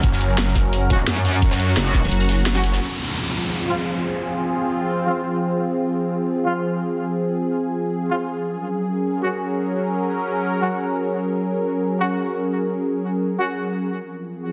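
A straight, driving drum and bass groove opens on the drop, with a knocking electronic kick, a layered kit with a cracking snare and hi-hat, and a gritty, saturated breakbeat kit in the background, all under two up-front basses: a metallic, aggressive FM wobble bass and a swirling, thick phased saw bass with sidechain pumping. Everything rhythmic falls away by 2.8 seconds, where a downlifter leads into a longer stretch carried by a bright, evolving, resonant pad with chorus and its own pumping, while a soft-attack classical brass ensemble, entering at 0.9 seconds and colored by low-pass filtering and delay, plays stabs under a filter sweep. The mood is dark, mechanical and futuristic, set in a lush hall reverb with a dense, heavily limited modern master.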